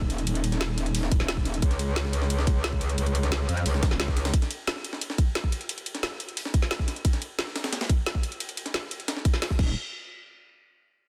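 Dark technical drum and bass at 177 BPM, mechanical and aggressive, cut from a longer piece with a dense, heavily limited master and little reverb. A metallic, saturated wobble bass with chorus and sidechain pumping growls from Eb1 to F2 up front until 4.3 seconds, returning briefly at 9.6 seconds, while a tight electronic kick drives the whole passage. Two layered kits fill out the drums: one up front with a woody snare, metallic hats and crash, and a gritty, pitched-up, tape-toned sampler-style jungle kit with filtered hats, ride and a medium-tuned snare sitting lower in the mix.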